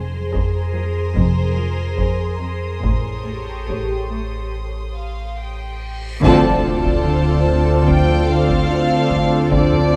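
This ominous, eerie suspense film score excerpt moves at a measured pace, built on a dense bed of bowed strings played sul tasto with soft attacks. Violins carry a floating melody over a second violin line and an intimate viola accompaniment, while a higher chamber violin texture sits faintly above. Down low, a rich cello riff, a cello bass line and a dark, woody double bass section sit in the background alongside a deep, rumbling synth drone and an evolving, morphing wavetable pad treated with chorus, phaser and reverb. A close, dry taiko ensemble struck with hard sticks drives the cue from 0.3 seconds, pausing for a break before a drum fill leads into the second section. A reverse cymbal at 6.0 seconds gives way at 6.2 seconds to a huge, dark impact and a band accent, and a very quiet, mellow French horn section adds sustained chords as the harmony settles onto D minor. The production is dark and set in a moderate concert hall ambience.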